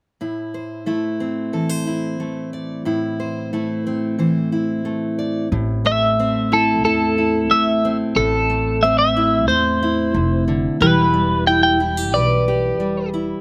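A bright, compressed twelve-string electric guitar carries the melody from 5.9 seconds with harmonic tremolo and slapback echo, over a full-bodied jumbo steel-string acoustic guitar fingerpicked with audible finger squeak and its own slapback echo from 0.2 seconds, and a woody, thumpy pizzicato upright bass that enters at 5.5 seconds, in a wistful, yearning folk piece in A minor at 90 BPM, recorded dry outdoors and cut from a longer work.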